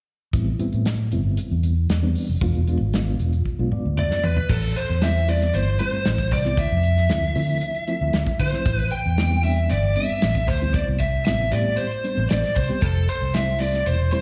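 A reedy, worn electric piano with a fast tremolo and slapback echo opens this brooding soul blues in A minor, sounding slightly out of tune through its built-in speakers. Alongside it are a round, amped fingered bass sitting up front and a muffled, lo-fi soul drum kit with a tight kick, medium-tuned snare, dark cymbals and a rolled-off top. The band moves at a straight 115 BPM in 4/4 over Am7 and E7b9, and the drums and piano both play a fill at 3.5 s. At 4.0 s a picked lead guitar through a small cranked amp enters up front with a warm, overdriven tone and its own slapback echo. The melody plays over a soulful progression of Am9, Dm9 and Fmaj7. Cut from a longer performance, the piece sounds like a live gig heard through the venue's PA, wrapped in a recital hall reverb.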